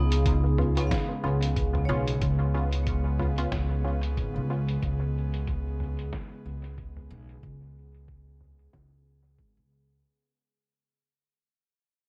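A woody, up-front pizzicato upright bass anchors this peaceful, spacious ambient dub excerpt at 92 BPM in Db mixolydian over a Db7 chord, joined by a breathy, chorused pad, a metallic vibraphone with hard mallets and tape echo that drops out at 4.8 s, a muted, detuned dub chord stab with chorus and dub echo that stops at 4.6 s, a muffled, pitched-down lo-fi drum kit with low-passed hats, snare and toms plus dub echo, and a thumpy, compressed electronic kick, set in a dry, echo-heavy mix that fades out across its 10 seconds while a filter sweeps over the drums.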